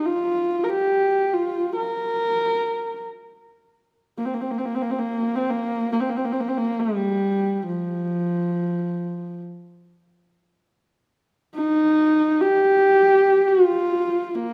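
A lone horsehead fiddle carries this Mongolian traditional piece, its bowed horsehair strings giving a dark, woody, husky voice with a smooth top end. Played by one player and placed up front, it ranges from F3 to Bb4 in a Bb zhi mode, with vibrato and portamento shaping the line. The mood is vast and proud, moving at a steady 69 BPM in 4/4 with a straight feel, tuned to A4 = 438 Hz. A short opening passage gives way at 3.5 seconds to a new section that runs until the fiddle stops at 14.5 seconds. A moderate recital hall reverb of 1.9 seconds surrounds the instrument, and the clip is cut from a longer piece.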